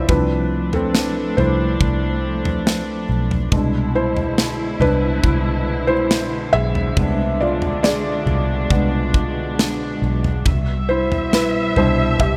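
A felt-muted upright piano, soft and intimate with audible action noise, sits up front in this hopeful, heartfelt pop ballad excerpt at 69 BPM, carrying a solo across the full 12.4 seconds over chords moving from Dm7/C to E7 at 3.5 seconds and Cmaj7 at 10.5 seconds. Beneath it, a dark, lush string section holds sustained bowed chords with expressive vibrato, while a round, foam-muted fingered electric bass anchors the low end. A polished, airy studio drum kit with a tight kick and medium-tuned snare enters at 0.1 seconds, and light reverb gives the piece a gentle studio ambience.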